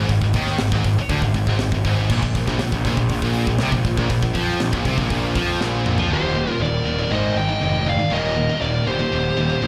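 Heard through a club's PA in a small, reverberant room, this short cut from a longer heavy metal piece has a dark, heavy mood at 120 BPM in a straight 4/4. Three picked electric guitars drive the opening riff: two bright, high-gain parts sit in the background while a sludgy, double-tracked, overdriven one stays very quiet beneath them. Up front, a growly fuzz bass, picked and overdriven with a direct, amped edge, anchors the low end under power chords moving from Ab5 to Bb5. A tight acoustic kit, polished and airy in a big room, with bright cymbals, a high-tuned snare and a tight kick, pounds along until a drum fill at 5.6 seconds, then drops out at 6.1 seconds. At that moment a shadowy, high-gain lead guitar takes the melody up front, joined by a second, quieter lead line carrying slapback echo over chords shifting between Eb and Ab5.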